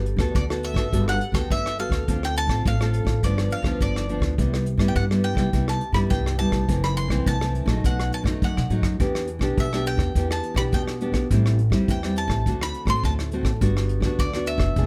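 Samba and choro in G major at 104 BPM, this sunny, lively excerpt sets an up-front fingerpicked nylon-string guitar and a woody, growly pizzicato upright bass against a punchy, small-room brush kit of hi-hat, kick and rim click, with a picked bowl-back mandolin entering at 0.4 seconds to carry the melody over a light reverb and a chord path that moves from Gmaj9 through Cmaj7, F#m7b5 and B7 to land on Gmaj7.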